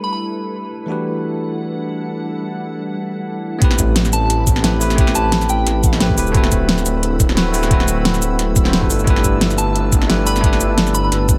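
A lightly swung sixteenth-note groove drives this dreamy, lush liquid drum and bass excerpt, which opens on a glassy FM pad with ensemble chorus and a bright, bell-like tine electric piano dabbed with dub echo over jazzy extended chords. At 3.6 seconds the drop arrives with a thumpy, gritty sampler kick and an overdriven pop kit of fat snare, metallic hats and shaker, joined at 3.8 seconds by a deep, rumbling detuned saw bass with tube saturation. A soft, pure FM bell melody floats in brief phrases in the upper register, colored by chorus, phaser and dub echo.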